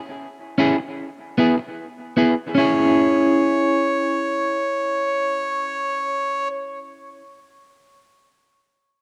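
A slightly broken-up electric guitar opens this hypnotic reggae fragment at 0.6 s, its picked accompaniment carrying tremolo and dub echo within a dark production set in moderate plate reverb. A reedy, breathy melodica joins at 2.6 s with a mellow line on C#5, trailed by its own dub echo. Both parts sit up front in a meditative mood until the melodica drops out at 6.5 s.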